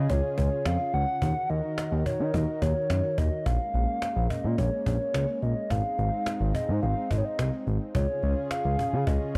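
Melancholic and nocturnal, this synth-pop piece, cut from a longer work, moves at a straight, steady pulse in four. A hollow, woody synth lead with a clarinet-like tone carries the melody up front, its soft, dark sound coloured by vibrato, chorus and an analog delay. Beneath it, a warm analog pad holds sustained chords with a slow attack, its detuned sawtooth tone smoothed further by chorus as the harmony passes through Db, Ebm, Bbm7 and Ab before returning to Db. A smooth, gliding synth bass sits prominently in the mix, blending sawtooth and square waves with a fast attack and portamento between notes. A snappy acoustic cajon with snares, struck with hard hands in a small room, joins at 0.1 seconds. The overall sound is dry and gritty, with little reverb.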